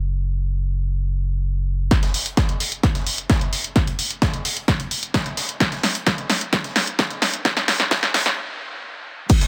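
A round, deep sine sub bass opens this dark, driving peak-time techno excerpt alone under a filter sweep, pumping against the beat with tube saturation. At 1.9 seconds an overdriven, heavy electronic kick lands up front with a punchy analog drum machine's snare, hats, shaker and crash, while a gritty, pitched-up breakbeat kit with a high-tuned snare sits in the background, all driving a build-up with a drum fill and a further filter sweep. A stop then comes at 8.4 seconds before the sub bass briefly returns at 9.4 seconds, framed by light reverb.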